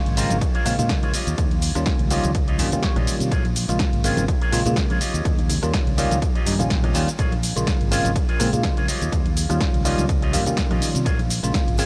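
Funky and nostalgic, this filtered disco house excerpt at 124 BPM swings lightly in 4/4 over a Bbm7 to Eb9 vamp, with a bell-like tine electric piano through a phaser, a saturated fingered electric bass, a punchy analog drum machine with hi-hat, rim click, shaker and snare, a dry electronic kick entering at 0.4 seconds, very quiet soft-handed maracas and congas, and a twangy envelope-filtered electric guitar riff with gritty sampler texture, all pumping against the kick except the hand percussion, while a clean electric guitar fill slips in at 2.6 seconds amid light digital reverb.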